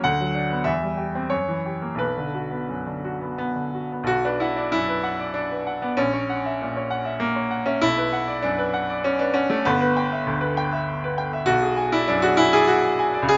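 In a rubato 3/4 lilt at 85-100 BPM, this passionate, stormy romantic character piece in B minor, cut from a longer work, features a brilliant, open baby grand piano playing solo and up front from G1 to G#5 through 13.4 seconds, its harmony moving through shifts such as F#7b9 and G6 under light reverb with a top end that stays below 7.5 kHz.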